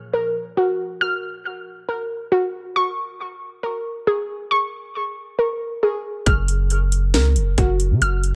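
A warbly, dusty pluck opens this eerie, melancholic trap excerpt, spinning arpeggios through chorus, phaser and dub echo over Gbmaj7 and Bbm7 chords at 137 BPM in a half-time feel. At 6.3 s a deep, sine-like 808 bass with long decaying notes arrives alongside a trap kit of hard-clipped kick, sharp snare and metallic hats, the drums overdriven and captured in a small room. The lo-fi, detuned pluck and the bass sit up front in an echo-heavy mix with light digital reverb.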